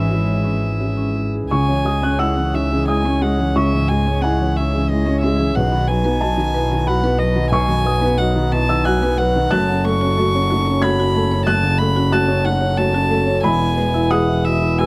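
A close, dry and detailed recording carries this melancholic, longing neoclassical excerpt in rubato 3/4 at 91 BPM, where a rich, floating sul tasto violin sings the melody over a muted upright piano thick with felt and audible action noise, a bowed double bass up front, and a background cello line, reedy breathing harmonium chords and woody, bright marimba arpeggios, moving from C#m through B and F#m to E.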